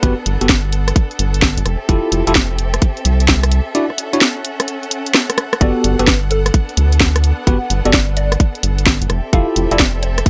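A dry, close, dark-topped mix frames this bouncy, soulful cut of two-step UK garage, with its 16th notes pushed into a 65% swing. Up front, an overdriven, tight electronic kick and a layered garage kit with a cracking snare, hi-hat and rim click drive the groove, joined by a rubbery, hollow square bass that pumps against the kick with a saturated, resonant pluck. A bell-like tine electric piano throws clean, bright stabs through tape echo, while a rich chamber violin section holds smooth, focused chords with vibrato, sitting low and breathing with sidechain pumping. The harmony drifts through lush major-ninth chords, Gmaj9, Fmaj9 and Dmaj9, and a drum fill at 5.1 seconds leads to the entry of a mallet-like synth pluck at 5.6 seconds. This woody, round melody sits in the background, softened by phaser, ensemble chorus, cassette tape colour and dub echo.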